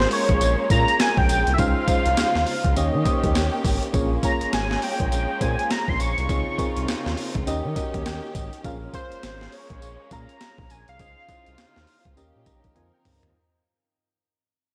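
A bold, bright octave-doubled lead carries the melody up front in this bouncy, confident new jack swing R&B excerpt, its detuned sawtooth tone colored by chorus, phaser and slapback echo over a swung sixteenth-note feel. Beneath it sit a gritty, overdriven boom bap sampler-style kit with a thumpy kick and high-tuned snare, a smooth gliding synth bass, soft electric-piano-like synth keys with tremolo, and a dark, distant string section holding lush sustained chords through a cycling Bbm7, Dbmaj9 and Eb7 progression. The keys add short fills at 7.8 and 12.2 seconds, a drum fill arrives at 12.8 seconds, and the passage fades out across its length.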